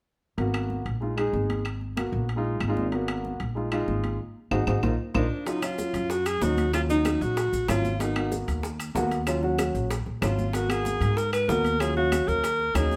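From 0.4 seconds, a grand piano with short sustain and a pizzicato upright bass with steel strings sit up front over congas, timbales and claves, opening this sultry, sophisticated Afro-Cuban jazz excerpt in Eb minor at 189 BPM in 4/4. The congas are bright and high-tuned, struck with hard hands, and the ringing metal-shell timbales sound alongside them, while the woody claves sit in the background. The harmony alternates between Abm7 and Bb7sus4 until a band accent, with a drum fill and a piano fill, carries the music into a second section built on Ebm7 and Abm9. A breathy alto saxophone enters at 5.2 seconds as the up-front solo voice, with a smooth top and light vibrato in a jazz style. At 5.5 seconds, tight, high-tuned bongos and grainy, compressed maracas join the percussion. The band plays live in one room, and a moderate large-studio reverb lends a polished, intimate warmth.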